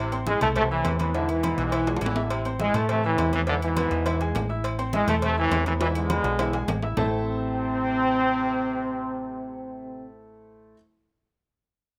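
A fiery, driving salsa cut from a longer piece opens at 206 BPM in A harmonic minor, with a clear, intimate grand piano (its action noise audible), a dark, punchy hollow-body electric bass up front, and a brilliant trombone section in the background, joined within a fraction of a second by ringing metal-shell timbales and agogo bells, very quiet congas, and round, low-tuned cowbell and bongos. An up-front, tight trombone section with light vibrato and a smooth top carries the melody over chords moving between Am and E, with drum fills and plate reverb on the horns and piano. The percussion stops at 7.0 seconds as a new section begins, leaving the melody trombones, piano and bass as the brilliant trombone section returns, all in a rough home-demo mix with moderate room reverb.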